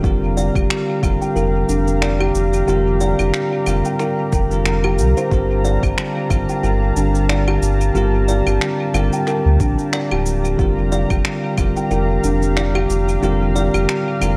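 An echo-heavy mix with light reverb and digital ambience frames this meditative organic downtempo piece, cut from a longer work and tuned to A4 = 435 Hz. At 91 BPM in 4/4 with a swung sixteenth feel, a round, mellow sine sub bass sits up front, while an overdriven, deep electronic kick carries the pulse until 11.7 s. Electronic cabasa, claves and finger snaps add a layered, overdriven texture, and both drum parts were re-recorded in a small room, with dub echo on the percussion. A bell-like, clean tine electric piano plays the accompaniment through sidechain pumping and dub echo. A woody, hollow kalimba rings out arpeggios under a filter sweep and its own dub echo. Above them, a smooth, detuned sawtooth pad holds sustained chords with chorus, tremolo and pumping as the harmony moves from Fsus24 to Gm9 and back.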